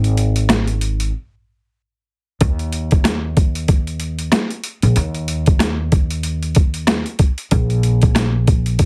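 Dry, heavily compressed radio-style sound frames this confident, nostalgic boom-bap hip-hop excerpt at 94 BPM with a 58% sixteenth-note swing, where a gritty, overdriven, pitched-down sampler-style kit of thumpy kick, high-tuned snare, rim click and hi-hat sits up front beside a woody pizzicato upright bass on steel strings, both running the full 8.9 seconds and opening on a break that lasts until 2.4 seconds.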